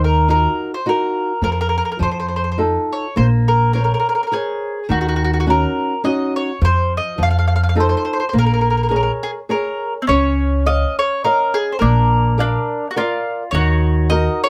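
From the first beat a woody, double-strung picked mandolin sings the melody up front over fingerpicked flamenco guitar and a pizzicato steel-strung upright bass in this passionate, romantic Italian folk serenade at 105 BPM in a swung 3/4, moving from Bb minor to Db major at 10.1 s as a second, rounder mandolin line slips in quietly at 10.0 s, all set in light reverb in a fragment cut from a longer piece.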